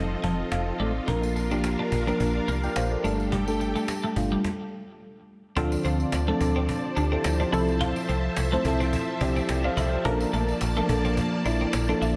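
Uplifting and nostalgic, this short cut of 1980s-style pop rides a lightly swung groove, with a round, dark FM electric piano opening on a fill over a snappy, metallic slap-like FM bass and vintage string-machine violas, while a bright, twangy twelve-string electric guitar riff with tape echo, a hard-handed cajon in the background and a jingly tambourine join almost at once. After a stop at 4.4 seconds, a punchy, detuned polysynth comp with a filter pluck adds funky stabs from 5.6 seconds as the chords move through Dm7, Fmaj7/C and Bbmaj7. The whole mix is soaked in plate reverb for a dreamy glow.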